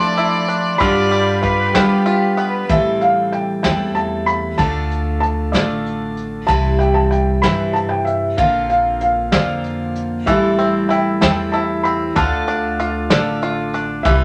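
A lilting 6/8 pulse at 63 beats per minute, felt in dotted quarters, carries this hopeful acoustic folk excerpt, with a vintage brush kit of hi-hat, punchy kick and medium-tuned snare joining just after the downbeat under a rolled-off top. A woody pizzicato upright bass and a bright, full-bodied picked steel-string guitar, sitting up front with audible finger squeak, hold the accompaniment throughout, while a mellow, intimate felt-muted upright piano sings the melody high above. The opening moves from Dmadd9/F to G7, colored by a dark, close-miked fiddle with light vibrato on a second line and a rich, reedy chamber string section with a gut-string, period-style tone in the background; both fall away at 2.7 s. A twangy, percussive bluegrass banjo plays arpeggios until 2.8 s. The harmony then cycles through Am7, Dm, Cmaj7 and Bbadd9, and the banjo returns at 10.3 s as the chords come back around to Am7 and Dm. 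A wet studio reverb wraps the mix in a soft, glowing room.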